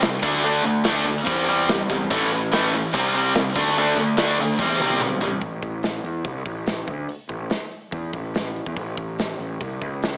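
A tight, bright, double-tracked distorted guitar riff opens this confident, sunny classic rock excerpt at 144 BPM, sitting up front over a fuzzy, punchy picked electric bass and a big acoustic drum kit with a punchy kick and medium-tuned snare. After a drum fill from 4.6 to 5.4 seconds, the guitar drops out, leaving bass and drums to carry the second section until around 10 seconds. The mix has light reverb and a small room ambience with a small speaker sound.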